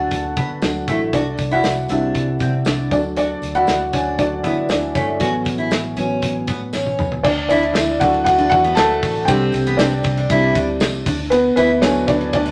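A soft, felt-muted upright piano sits up front and carries this uplifting, hopeful piano-driven pop excerpt, joined by a bright picked steel-string acoustic guitar riff, a round, foam-muted electric bass, a loose small-room drum kit with dark cymbals that plays a fill from 6.7 to 7.2 seconds, and a very quiet jingly tambourine, all in a moderate studio reverb.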